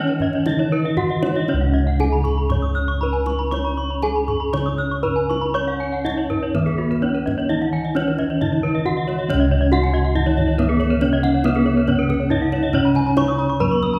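Bronze metallophones and round, beating bossed gongs ring out together from the start of this brilliant, ceremonial Balinese gamelan passage in Db slendro at 118-139 BPM: a close-miked, dry melody line struck with a wooden mallet sits up front, a mellow accompaniment played with padded disc mallets rests in the background, one horn-mallet arpeggio part has a vintage, band-limited colour, a second bright, airy horn-mallet arpeggio enters at 0.2 s, each metallophone shimmers with the beats of paired tuning, and a deep kendang played with soft hands sits behind the ensemble in a reverberant recital-hall space as the music moves into a new section at 9.3 s.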